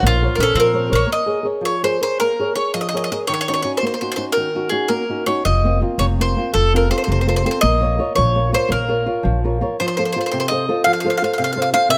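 A warm, picked bowl-back mandolin with double strings carries the wistful, passionate melody of this Italian folk serenade in Bb minor from the very start, over a dark, fingerpicked flamenco guitar with audible finger squeak and a woody, thumpy pizzicato upright bass on gut strings that sounds briefly at the opening and returns from 5.5 to 9.6 seconds, all three up front in a close, detailed sound with light reverb, moving in a straight 6/8 at 111 dotted-quarter beats per minute through a chord progression that settles from Bbm7 and Ebm7 toward F.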